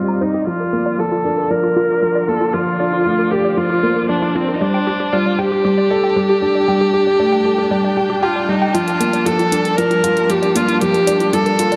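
A melancholic, intimate piano-and-strings electronica piece opens with a single bowed viola carrying the melody up front, its tone smooth and even with gentle vibrato. Beside it, a felt-muted upright piano plays a soft, mellow riff with audible action noise and a vintage character, while a veiled, con sordino studio string section holds sustained chords in the background. A lo-fi, detuned pluck joins at 0.1 seconds with arpeggios, its warbling, dusty sound shaped by chorus, tape echo and a filter sweep that runs until 8.7 seconds. The harmony moves from Bbmaj7/D through Dsus4, and at 8.7 seconds it lands on Gm7 as a build-up begins: a very quiet, lush cello section enters on a low bass note, and an electronic hi-hat, layered and re-recorded in a small room, comes in with its highs filtered down. The overall production is dark and warm, set in a moderate recital-hall reverb with a touch of small-room ambience, and the excerpt is cut from a longer piece.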